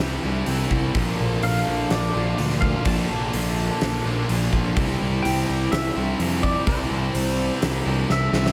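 Wistful and hazy, this short shoegaze and dream pop cut from a longer rock piece moves in a straight 4/4 over a drift from C to Bbmaj7 and back to C. A clean, twangy electric guitar carries the melody high above the band, fingered and compressed, bathed in lush chorus and delay. Beneath it, a biting overdriven guitar plays a picked riff trailed by reverse reverb, while a thick, dark fuzz guitar adds a riff of its own from the background with distortion and a subtle chorus. A punchy, fuzz-laden picked bass anchors the low end, and a huge arena drum kit enters at 0.5 seconds, sitting up front with a fat snare, punchy kick, hi-hat and a pumping hall room sound, before a drum fill closes things out at 8.1 seconds. The whole mix is dreamy and soaked in plate reverb, giving the guitars a blurred, enveloping glow.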